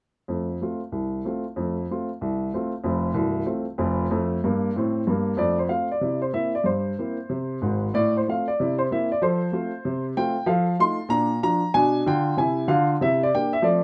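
Swung eighths drive a brisk 4/4 stride jazz passage with a playful, exuberant mood, carried entirely by a solo baby grand piano from 0.3 to 13.8 s. The piano sounds warm and open, with long sustain and an up-front presence, ranging from deep bass down at C1 up to C6 inside a moderate club reverb. After an opening built on F and Bb5/F, a new passage begins at 5.4 s that moves through C7, F7, Bb and Bdim7 before landing on a C9, as this fragment of a longer piece breaks off.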